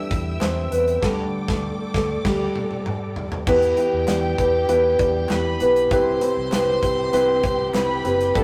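A straight 4/4 pulse at 98 BPM carries this bittersweet, earnest piano-driven pop piece in E minor, where a soft, felt-muted upright piano sits up front over dark, woody bowed strings in the background, a round, punchy muted electric bass, an acoustic drum kit with tight kick, crash, hi-hat, snare and toms, and very quiet crisp handclaps, with a band accent at 1.0 s and a drum fill at 2.2 s before a pure, floating violin section joins at 3.5 s as the chords move from Em through Dsus4 to Cmaj7, captured as a rough rehearsal-room recording with moderate stone-room reverb.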